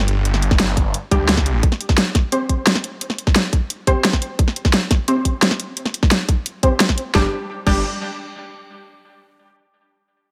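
A snarling, detuned saw bass growls with distortion and sidechain pumping through the opening 1.6 seconds and returns at 7.1 seconds, framing bold, ring-modulated orchestra-hit stabs under a filter sweep, a tight electronic kick and a dubstep kit with a huge snare and bright hats in this dark, mechanical technical drum and bass excerpt.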